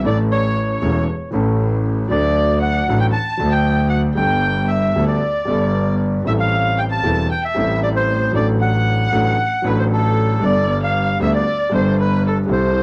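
A distant, bowed violin with vibrato and portamento opens this passionate, playful tango fragment together with a concert grand piano, whose intimate, vintage tone carries deep bass and audible action noise. An instant later the bandoneon takes the melody up front, reedy, dark and smooth, with its line colored by analog delay. A bright, biting double bass, bowed by one player with light vibrato, anchors the low end with intense presence. The violin acts as an expressive second line in the bandoneon's high register, set further back than the other parts, and both violin and piano carry plate reverb and the grain of cassette tape, as does the bandoneon. Over a rubato feel, the harmony moves from A through D and Gadd9 to Am7, D/A and back to Gadd9 across the 12.8 seconds, all within the light-reverb air of a home cassette recording.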